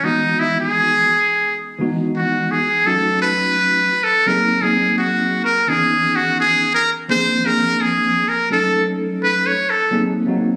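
A cool, mellow hip hop groove at 85 BPM opens with a muted trumpet solo up front, its buzzy, breathy tone and soft attack phrased in a jazz style over a clean, mellow tine electric piano heard as if through built-in speakers. The piano carries chords moving from Emaj7 through D#m7b5, G#7 and C#m7, swinging lightly on the sixteenths. The trumpet and piano close this fragment of a longer piece in a phone-captured club room with a moderate plate reverb.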